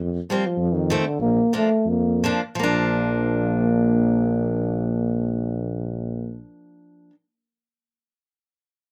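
A lightly swung 2/4 pulse, slowing through the opening 2.6 seconds, carries this brief, festive and jolly alpine folk dance band fragment cut from a longer piece. A mellow, close-miked tuba with light vibrato lays down the bass from the start, a dark euphonium sings the solo melody in classical style, and a bright, up-front picked steel-string acoustic guitar plays accompaniment, outlasting the others until 7.1 seconds. Close, detailed microphones and light reverb give the trio an intimate, concert-like presence as it moves through a suspended chord, a dominant seventh and onto the home chord.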